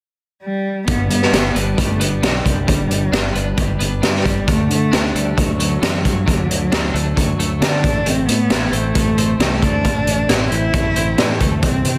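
A rich, bowed cello with vibrato and portamento opens alone with a slapback echo before a clean, twangy twelve-string electric guitar with tremolo, a growling overdriven fingered bass and an up-front, gritty garage drum kit with a boomy kick and high-tuned snare join at 0.9 seconds, driving this dark, angsty quiet-loud alternative rock excerpt in A dorian at 134 BPM through G, D and Am.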